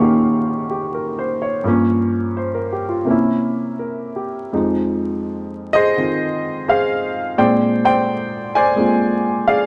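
A worn, up-front concert grand piano with a deep bass plays alone through this warm, swinging 9.7-second solo jazz excerpt in a loose rubato swing, moving from Eb13 through Gm7b5, C7b9 and Fm7 to Bb13, set in a moderate studio reverb with a vinyl crackle and a dulled top end.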